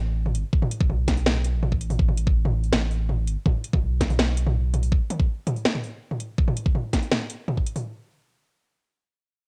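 Dark and cinematic, this short cut from a longer half-time drum and bass piece sits at 164 BPM in 4/4, landing straight into a drop. A saturated sub bass opens the recording at 0.0 seconds, deep and thick with a triangle-like tone, a fast attack and sustained notes held low between G1 and B1, stopping at 4.9 seconds. The drum kit follows at 0.3 seconds with a cracking snare, metallic hi-hats and toms, and an electronic kick joins at 0.5 seconds with a knocking punch, both layered, produced and carrying the warm color of cassette tape as if re-recorded in a small room. Bass and drums all sit up front in a dry mix with little reverb, giving the home cassette recording a close immediacy.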